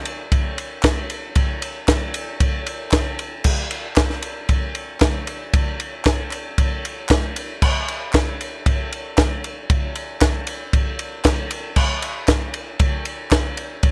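A compact cocktail drum kit opens this short rock excerpt at 0.1 s, playing a straight 4/4 groove at 115 BPM with a jangly, carefree mood. The dry, up-front kit pairs a punchy kick and high-tuned snare with dark crash and ride cymbals. A hollow, human-sounding group handclap enters at 0.8 s, sitting close and dry in the background, and the whole recording has very little reverb.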